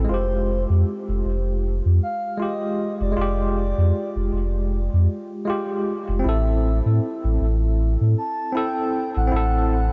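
A deep, round sub bass sits up front in this brooding, cinematic trip hop passage, its sustained tones given a gentle push by tube saturation. It holds the low end throughout a single section of about 10 seconds at 78 BPM in 4/4, with a 16th-note swing that lends the groove a slight lilt. A bright, clean tine electric piano carries the accompaniment, treated with tremolo, tape echo and a low-pass filter sweep that runs across the whole passage. Entering at 0.1 seconds, a pure, breathy sine lead glides and warbles high above, its soft attack, vibrato and chorus giving it a vintage, dark character. The harmony moves from Fmadd9 to Am at 6.2 seconds, and light reverb frames this short cut from a longer piece.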